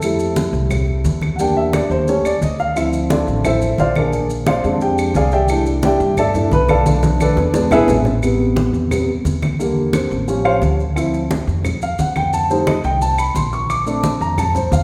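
Afro-Cuban jazz at 176 BPM in a lively, danceable straight 4/4, cut from a longer piece, where an up-front, warm upright piano with long sustain solos throughout over rich jazz chords that settle into A minor from 8.2 s, backed by a thumpy pizzicato upright bass on steel strings, bright low-tuned congas, background woody claves and grainy, mellow maracas, with a drum fill from 6.9 to 8.2 s and the whole group placed in a wet recital-hall reverb.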